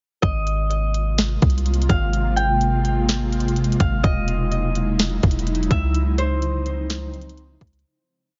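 Floating and blissful, this short atmospheric cloud-rap piece sets a mellow, fingerpicked Celtic harp loop ringing through digital delay over an ethereal, detuned pad with ensemble chorus and sidechain pumping, a deep, boomy 808-style bass holding long sub-bass notes that follow the kick, and a sparse half-time trap beat of hard-clipped kick, sharp snare and crisp hi-hat rolls, all squeezed into a heavily compressed, radio-like sound that fades out from 5.9 to 7.8 seconds.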